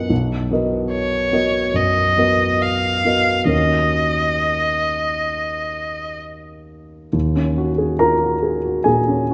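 Classical impressionist music for a duo of violin and grand piano, this short passage cut from a longer piece has a mysterious, wistful mood and a free, rubato feel in four. A single bowed violin carries the melody with a rich, expressive tone, colored by vibrato and portamento, and it sits up front before falling silent at 6.2 seconds. The grand piano accompanies throughout, spanning a broad register from deep bass to high treble, and its warm, intimate, natural sound includes audible action noise. Once the violin stops, the piano continues alone, and at 7.1 seconds the music moves into a new section. The harmony drifts from Bmaj7 to Ebm7 and settles on Ebm11. A moderate scoring stage reverb gives both instruments a sense of space around their up-front presence.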